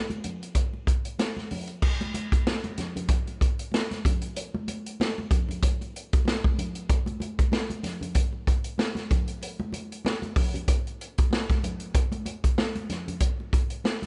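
A playful, funky excerpt at 95 BPM in 4/4 with a 16th-note swing, built around a swinging big-band drum kit whose punchy kick, medium-tuned snare, hi-hat and crash cymbal sound up front in a roomy studio space. Congas run alongside the kit from 0.1 to 14.1 seconds, sitting lower in the mix with a bright, thin-skinned, soft-handed tone. The recording carries little reverb and a rolled-off top end, and a short opening passage gives way at 1.8 seconds to the longer main section.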